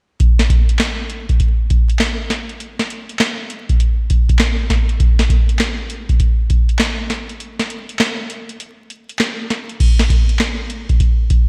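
A swung sixteenth-note groove at 100 BPM in 4/4 drives this upbeat, flirty R&B excerpt, carried entirely by a booming analog drum machine with a deep kick, crisp snare, metallic hi-hats, handclaps and crash cymbal sitting dry and up front. A break arrives at 7.4 seconds, and a new section begins at 9.8 seconds before the clip cuts off. Light reverb and a layer of vinyl crackle give the sound a dusty, vintage sheen.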